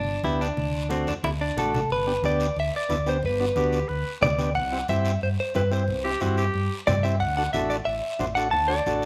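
This joyful, danceable cumbia excerpt moves at 181 BPM in a straight 4/4 in G major, with its chords moving from G and D to C before returning to D. A bright, compressed electric guitar, picked and recorded direct with a clean tone and a touch of spring reverb, carries the melody up front. It sits beside a dark, round, punchy fingered bass that is just as forward. From 0.2 seconds a vintage combo organ adds reedy accompaniment, and low-tuned congas with a thick-skinned, soft-handed sound sit in the background alongside a raspy acoustic guiro. A short fill leads into the second section, where a gritty, forceful tenor saxophone with light vibrato and a smooth top plays a clear second line in a pop style between 3.6 and 6.8 seconds. The whole band shares a moderate large studio reverb.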